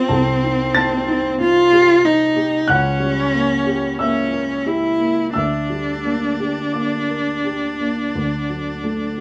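Classical romantic duo for cello and grand piano, melancholic and elegiac in mood, moving slowly at 43-47 BPM in 4/4 with a rubato feel and tuned to A4 = 441 Hz. A single bowed cello carries the melody in a narrow span from C4 to F4, its tone rich and focused with vibrato and a smooth top, sitting up front. A baby grand piano accompanies across a broad compass from C2 to A6, with a natural, warm sound, short sustain and a close presence. The harmony passes from Am7b5/C through C#dim7 and Gm/D before settling on D at 8.2 seconds. Both instruments play together for the whole 9.2-second passage, cut from a longer piece, framed by light reverb.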